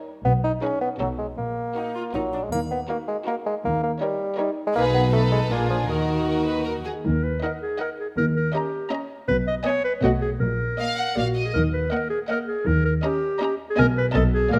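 A punchy, up-front solo bassoon carries the accompaniment until 6.6 s in this playful, mischievous film cue at 160 BPM in 3/4 and Eb minor, and a mellow clarinet then enters on the second line at 6.7 s, while sul tasto violin sections carry a floating melody and an intimate second line over rich violas, dark, woody, lush cellos and pure double basses, with a brief close triangle near 2.5 s and moderate scoring-stage reverb lending a magical, whimsical glow.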